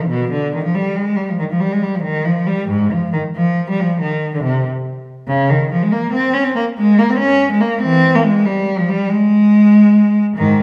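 A lush recital hall reverb, about 1.4 seconds long, surrounds this short fragment of a classical piece, giving it the resonant bloom of a church or concert hall. A single bowed cello plays alone from the first moment to the last at 10.6 seconds, in a baroque-style suite movement for unaccompanied cello. The mood is introspective and flowing, moving in a lilting 12/8 at around 94 beats per minute counted in dotted quarters, with a free, rubato feel. The cello sits up front yet carries a distant, expressive quality, its warm tone shaped by vibrato and portamento as it ranges from Ab2 up to Db4. The passage is cut from a longer movement, so it feels like a brief glimpse into an unfolding, contemplative line.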